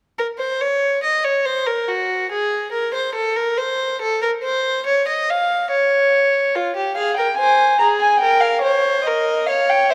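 A dark, nasal gut-string violin enters at 7.0 s to carry the melody of this driving, solemn baroque-style string quartet fugue at 71 BPM in 4/4. It sits over a rich, lightly vibrato second violin in the same reedy period style that has played since 0.2 s, with harmony moving from Fm to Gm7b5/Bb, all tuned to A4 = 441 Hz and set in a moderate concert hall reverb.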